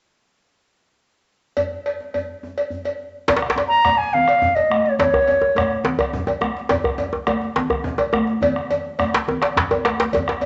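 A metallic cowbell and a deep djembe with rattling metal in the background open this earthy, festive West African drum ensemble excerpt at 140 BPM in a straight 12/8. At 3.3 s a round bombo, bright, high-tuned congas played with soft hands, and a tight, cracking djembe up front join in, and at 3.7 s an airy, reedy concert flute adds a brief tongued, straight-toned line in Db major pentatonic that ends at 5.8 s. A drum fill arrives at 9.4 s, and the piece sits in a moderate large studio reverb with a rolled-off top end.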